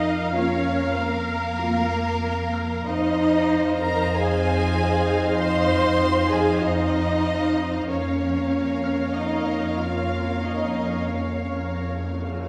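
This cinematic piece for strings, horns and harp is tense and mysterious, moving at 95 BPM in a straight 4/4, and it is cut from a longer work. A violin section holds the melody on F5, sitting in the background with smooth vibrato. A second violin section adds a rich, expressive line from Bb4 to C6 with soft attacks. Lush violas fill the middle, while a dark, distant cello section with portamento and an up-front, warm double bass section on F2 anchor the low end. A mellow French horn section enters at 0.3 s with sustained chords, and a very quiet, ringing fingerpicked harp joins at 2.5 s, high between F6 and C7. The harmony moves from Bbm/F to Fm7 and back to Bbm/F, all bathed in a recital hall reverb that suggests a church or concert hall.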